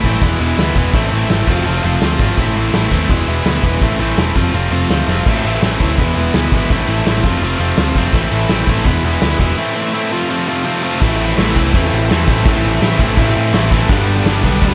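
Punk rock at 167 BPM, angry and raw, built on a looping E, Am, F, Am progression in A harmonic minor before settling into A minor at 11.0 s. Two bright, distorted electric guitars drive the riffs, one sitting up front, over a growly, overdriven picked bass and a loose, roomy, distant-sounding drum kit with a punchy kick and a medium-tuned snare. The drums throw in a fill at 5.1 s, a break lands at 9.6 s, and the dry sound of this cut from a longer piece keeps the whole band raw.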